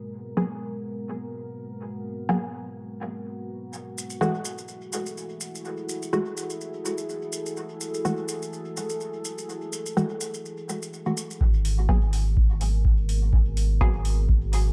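Deep and hypnotic, this dub techno excerpt opens on a dark, warbling pad with vintage sampler grit and muted, sawtooth dub chord stabs trailing echo and pumping against the sidechain, joined at 3.7 seconds by grainy, band-limited maracas, before a round sine sub bass and a dry analog kick arrive at 11.4 seconds, with metallic hi-hats following a moment later, in a light, echo-heavy digital space.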